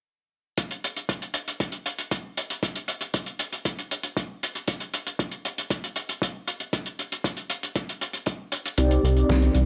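Melodramatic and nostalgic, this italo disco excerpt opens at 0.6 seconds with a dry, dark 70s drum kit of fat snare and hi-hat alongside a gritty, thumpy, sampler-style electronic kick in a small room, until at 8.8 seconds a glossy, saturated pulse-wave synth bass with chorus and a round, brassy, detuned synth brass with chorus arrive on a Cmadd9 chord just before the cut.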